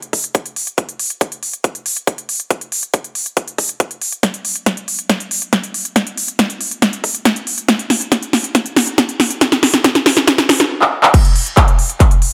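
A punchy, overdriven electronic kick drum sits up front in this soaring, euphoric trance passage at 139 BPM in a straight 4/4, alongside a layered big-room dance kit of snare, crisp hi-hats, handclaps and crash cymbal, each with a gritty edge. The drums build from the start, with fills running from 4.2 to 10.7 seconds and again just before the drop lands at 11.1 seconds. A moderate room reverb gives the short passage, cut from a longer piece, a compact sense of space.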